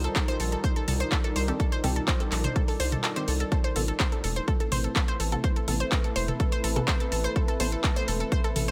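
A punchy, overdriven electronic kick drives a straight pulse in this short cut from a melodic techno track, dropping out briefly between 3.0 and 3.5 seconds before returning, while an overdriven house kit adds handclaps, hi-hat and toms. The mood is dramatic and hypnotic, with a round, deep analog bass sitting up front and pumping against the kick. Above it, a bright, detuned unison pluck spins arpeggios through a digital delay, and a very quiet, muted dub chord stab with a phaser slips in from 1.5 seconds. A moody sawtooth pad with a sub octave holds sustained chords under chorus and reverb, moving from C minor to A minor add9 midway, and an ethereal, airy pad with ensemble chorus and a moving notch drifts in the background. The pads and pluck breathe with sidechain pumping, and the mix is dry, with the drums carrying the sound of a large room.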